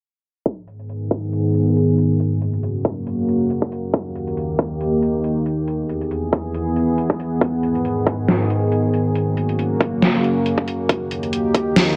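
Lush hall reverb and a low-pass filter shape this heavy, menacing wobble dubstep fragment, which moves at 138 BPM in G# minor with a swung, half-time 4/4 feel. From 0.5 seconds, an evolving, warbling wavetable pad holds full-bodied, vintage sustained chords with chorus, slow attack, long release and sidechain pumping, while a filter sweep runs across it through G#m, F#, D# and E. Up front sit an overdriven, punchy electronic kick and a layered drum kit with a deep snare and metallic hi-hats, both re-recorded in a small room.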